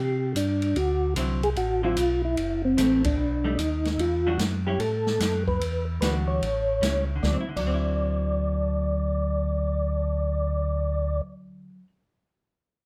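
A soulful, bluesy soul jazz organ trio fragment opens with a mellow, flute-like percussive tonewheel organ carrying the melody up front over a piping, scooped tonewheel organ bass line, both turning through a slow rotary speaker, with chorus vibrato adding shimmer to the lead. An acoustic drum kit with dark cymbals and a boomy kick joins at 0.4 s and drops out before the close, a picked, compressed hollow-body electric guitar comps from 1.2 s, and the band hits a shared accent at 3.0 s. The swung groove moves through jazzy extended chords inside a moderate club reverb.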